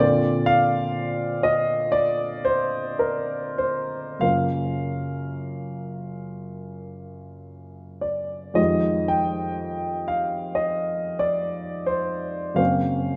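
A clear, present grand piano with long sustain plays alone up front in this hazy, nocturnal impressionist classical excerpt, drifting in rubato 4/4 at 47-65 BPM through Bbadd9, Gbmaj7, Fm9 and Gbmaj7#11 chords across a range from F2 to G5, bathed in the moderate reverb of a concert hall.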